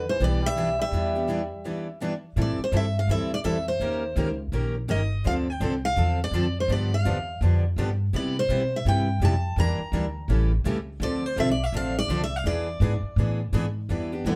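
Recorded live in one room with moderate studio ambience, this fiery, virtuosic excerpt of acoustic string swing is cut from a longer piece. A bright picked steel-string guitar carries the melody up front with finger squeak, while a clear, punchy trombone with light vibrato plays a forceful second line that stops at 2.0 seconds and returns briefly at 14.3 seconds. A woody, thumpy pizzicato upright bass sits up front, and two picked acoustic guitars supply the swung accompaniment, one full-bodied dreadnought and one concert guitar in the background, with a short break near the start.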